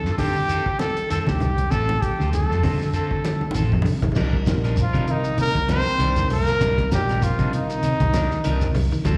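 A driving 98 BPM afrobeat groove in 4/4 with a light sixteenth-note swing, in C dorian, where a cloth-damped, thuddy drum kit with a fat snare and a drum fill at 3.4 seconds underpins a round fingered electric bass, background congas and a grainy shekere, while a breathy, intimate trumpet carries the melody up front over a tine electric piano, a quiet semi-hollow guitar's arpeggios and twangy, slightly broken-up guitar stabs with warbly pitch drift, a veiled bucket-muted trombone joining as a second line at 4.8 seconds as the chords move from Dm7 to Cm9, all heard as an intense live gig through the venue's PA with recital hall reverb.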